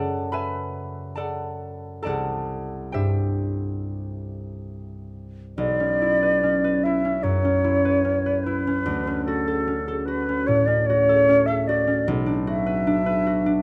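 A mellow, ringing concert harp opens this short cut from a longer impressionist duo, its fingerpicked accompaniment moving from F#7sus4 to Cmaj7 and spanning B1 to F#6. At 5.6 seconds the concert flute enters with the melody, an airy, expressive voice with vibrato and tongued notes, sitting between A4 and E5. The harmony shifts through Bm11 and Dmaj7 before settling on Bm7, giving the passage a wistful, hazy mood. The tempo drifts between 66 and 76 BPM in 4/4 with a rubato feel, and the instruments are tuned to A4 = 445 Hz. Both instruments sit up front, captured by close, detailed microphones in light reverb, and play together until the clip ends at 13.6 seconds.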